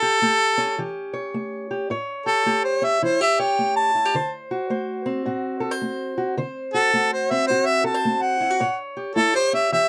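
A swung 4/4 pulse at 107 BPM drives this soulful, rollicking acoustic country blues excerpt, where a harmonica with a soft attack, light vibrato, scooped notes and a smooth top plays a jazz-style solo up front through the whole 9.9 seconds, ranging from A4 to A5 over a woody, boxy fingerpicked parlour steel-string guitar on old strings that moves from A7 to D7 at 4.1 seconds and back to A7 at 8.6 seconds, captured by close, detailed microphones with light reverb.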